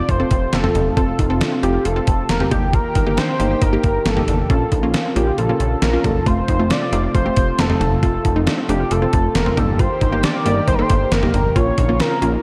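A bold, wave-folded octave-doubled lead with chorus and analog delay sings over a punchy unison pluck, a thick, airy unison pad, a very quiet, squelchy resonant blip pluck and a nasal, saturated chorused synth bass, while a gated 80s digital drum machine with a thumpy kick and an overdriven gated-reverb snare sits up front in this wistful, bright synth-pop passage, cut from a longer piece, which cycles through F, Eb/G and Bbm in a dark, lush hall.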